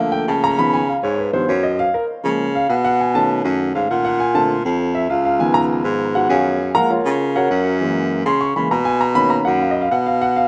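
An intimate concert grand piano carries a solo throughout this sunny, danceable Afro-Cuban jazz passage at 200 BPM in a straight 4/4, its deep bass, long natural sustain and audible action noise sitting up front as ninth and seventh chords move through the harmony before settling into F# major at 6.6 s. Beneath it, a baritone saxophone takes the bass role with light vibrato and scooped notes, its roomy jazz-style tone adding a warm low end. The short cut from a longer piece has a rough home-demo quality, bathed in a moderate plate reverb.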